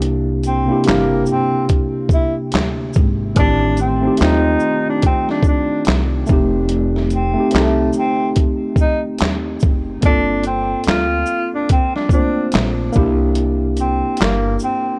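A slow lo-fi hip hop groove at 72 BPM opens this nostalgic, hazy excerpt. A worn, slightly out-of-tune tine electric piano, a pizzicato upright bass and a gritty boom bap sampler-style drum kit start together at 0.0 seconds. The compressed, pitched-down drums sound re-recorded in a small room, with a thumpy kick, a medium-tuned snare, hi-hat, shaker and handclaps sitting up front in a relaxed 16th-note swing. The acoustic gut-string bass is woody and dark. The clean, direct electric piano, coloured by cassette tape, moves through C9, Am7b5, F7 and Gm11 before returning to C9. At 0.5 seconds a breathy tenor saxophone takes a jazz-style solo melody, whispered and intimate with subtone, vibrato, soft attacks and scooped notes, its distant, roomy tone trailed by analog delay, while the overall mix carries little reverb and a cassette tape haze.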